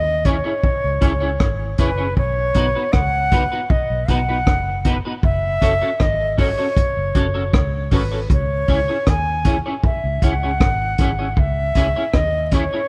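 Roots reggae with a hypnotic, laid-back feel, cut from a longer piece, where an airy, bright flute with a crisp, chiffy attack carries the melody up front over a round, punchy foam-muted bass, clean picked electric guitar with ensemble chorus, and a crunchy breakbeat kit of hi-hat, tight kick and rim click roughened by vintage 12-bit sampler grit, all sitting in a small, lightly reverberant room with the feel of a rough home demo as the chords move from C#m through B and F#m back to C#m.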